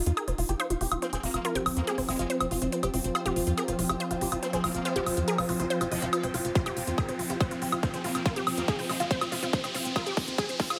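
A punchy, tape-warm electronic kick drum lands at 6.6 s with a drum fill, crowning a hypnotic psychedelic trance build-up in which crisp electronic hi-hats and woodblock and a tight, dark sequencer bass play alongside a sidechain-pumping unison pluck riff with tape echo. A detuned supersaw stab carries the melody through a filter sweep, phaser and tape echo, over a swarming, warbling drone with phaser and a blurred granular cloud pad in the background. A metallic, distorted wobble bass with lush chorus and delay sits far back, while an electronic riser climbs from 2.1 s, all within a moderate hall reverb.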